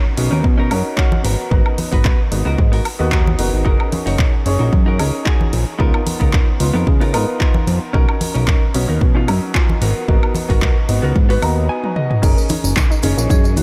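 Nu-disco with a sunny, groovy swing, this cut rides on a punchy, up-front electronic kick, a layered house kit of hi-hat, handclaps, tambourine, woodblock, toms and crash, very quiet close-miked congas and maracas, and a fat, saturated analog bass with a nasal, detuned edge. A polished baby grand piano with lush chorus, sidechain pumping and delay carries the chords, while a clean, direct-recorded electric guitar picks a compressed riff through its own chorus and delay and adds a fill before a brief break and drum fill lead into the drop at 12.2 seconds. There the guitar stops and a round, wave-folded analog pluck with cassette-tape colour plays arpeggios in the background, and a bright, airy vibraphone with slow motor vibrato enters at 13.3 seconds.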